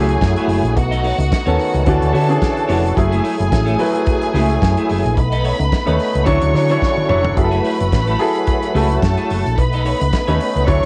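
A swung, driving disco groove at 109 BPM in F# minor sets a sultry mood, with a tight-kicked, fat-snared soul drum kit entering at 0.1 seconds and rolling into a fill at 6.8 seconds beneath a round, up-front hollow-body bass, a lush bowed violin section, a dark clean electric guitar tucked in the background, a natural baby grand piano and a lightly overdriven tonewheel organ on slow rotary, all moving through F#m9, B9 and Dmaj9 in a dry, tape-coloured home recording cut from a longer piece.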